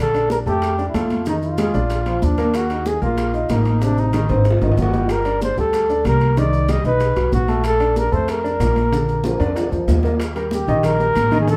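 Afro-Cuban jazz at 188 BPM in Bb major, sunny and lively, this short cut features a dark, breathy, close-miked trumpet with vibrato out front over a woody, thumpy pizzicato upright bass and an intimate grand piano with audible action noise, while bright, damped congas, tight, very quiet bongos, distant ringing timbales and grainy maracas drive the rhythm in a moderate large-room reverb, with drum fills at 4.3 and 9.2 seconds before the music turns to a new section at 10.2 seconds.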